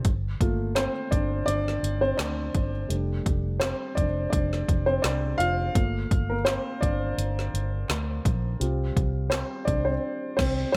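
A lightly swung sixteenth-note groove in 4/4 drives this uplifting, anthemic piano-led pop excerpt, with a deep house drum kit of punchy kick, woody snare, dark hats, handclaps and crash sitting up front in a small-room sound. The dark upright piano carries the lead throughout, mellow and intimate with audible action noise, a boxy tone and long sustain, cycling through Gm7, F6, Gm7 and Csus4. Underneath, a vintage muted fingered electric bass adds a round, foam-muted low end, and the whole band lands a shared accent from 10.0 seconds under light reverb.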